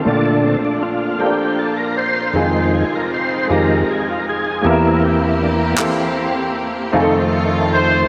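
A slow, straight 6/8 pulse at 52 BPM carries this uplifting, jubilant gospel fragment in Bb major, where a gritty, overdriven tonewheel organ with fast rotary speaker and chorus vibrato takes the solo up front over a woody upright piano with lush chorus and bowed, focused studio strings, a hollow group handclap lands at 5.8 seconds, and a distant, roomy horn section enters on C5 at 7.7 seconds, inside a dreamy, reverb-soaked hall as the chords move from Bbmaj7 through Fm7 and C7/E to F7.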